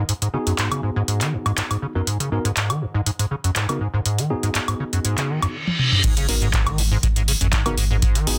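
A straight 4/4 groove at 121 BPM drives this raw, gritty acid house cut in G# minor, opening with a squelchy, resonant acid bass riff under a filter sweep, with chorus, overdrive, delay and sidechain pumping, over a booming analog drum machine with metallic hats, handclaps, toms, woodblock and crash. A worn, slightly out-of-tune tine electric piano adds clean delayed stabs on a G#m7 chord. A reverse cymbal rises in the background from 5.4 seconds into a short drum fill, and at 6.0 seconds the drop hits with an impact and a deep, tape-warm electronic kick, joined moments later by a thick, saturated sub bass pumping beneath the dense, heavily limited mix.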